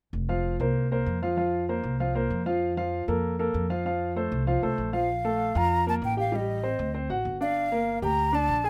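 A woody, thumpy pizzicato upright bass opens this sunny, sophisticated stretch of Afro-Cuban jazz in a straight 4/4, and a smooth, vintage grand piano joins at 0.3 seconds to lay down the accompaniment. At 5.0 seconds a breathy, hollow jazz flute enters up front with vibrato and a soft attack, carrying the melody as the harmony moves through Bb5, Am7b5 and D7 to Gm9. Light reverb surrounds the rough home-demo mix, which is cut from a longer piece.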